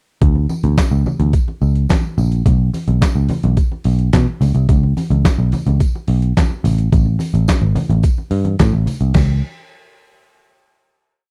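Glamorous and sultry, this short disco piece moves at 108 BPM in a straight 4/4, set entirely as a breakdown from 0.2 seconds before closing on a final chord at 9.2 seconds. A picked electric bass sits up front with a dark, round, foam-muted tone, playing a syncopated disco line with chromatic approach notes. The boom bap sampler-style drum kit is compressed, pitched down and overdriven, with a thumpy kick, a medium-tuned snare layered with handclaps, and open hi-hats on the off-beats over a four-on-the-floor beat, plus crash cymbal, all re-recorded in a large room and placed up front. In the background, low-tuned, ringing congas carry a syncopated groove, while a jingly tambourine, entering at 0.5 seconds, marks the backbeat. The overall sound is dry and close, in the manner of a 1970s studio recording with little reverb.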